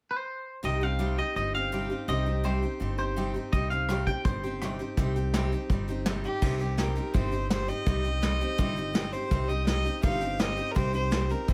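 Lonesome and heartbroken, this brief excerpt from a longer honky-tonk and classic country piece moves at a straight 166 BPM in C minor, with a twangy, scooped electric guitar carrying the melody up front from 0.1 s until it gives way at 6.0 s. Beneath it, a bright, full-bodied picked acoustic guitar with audible finger squeak and a woody, thumpy pizzicato upright bass settle onto a C minor chord from 0.6 s, while a distant, roomy brush drum kit with a punchy kick, rim clicks, hi-hat and crash joins at 3.5 s. From 6.4 s a clear, earthy fiddle with light vibrato takes a bowed solo, all captured dry with little reverb.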